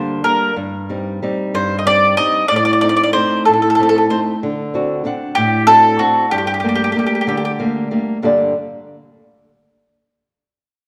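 Italian folk serenade in 6/8, wistful and passionate, moving through minor-key harmony from a diminished chord to a dominant seventh before settling on an added-ninth minor chord. An up-front mandolin carries the melody with a mellow, round tone from its picked double strings, while a dark, small-sounding nylon-string guitar fingerpicks the accompaniment close by, a finger squeak audible, until it stops at 8.5 seconds. Both sit in a wet scoring-stage reverb, and this excerpt is cut from a longer piece.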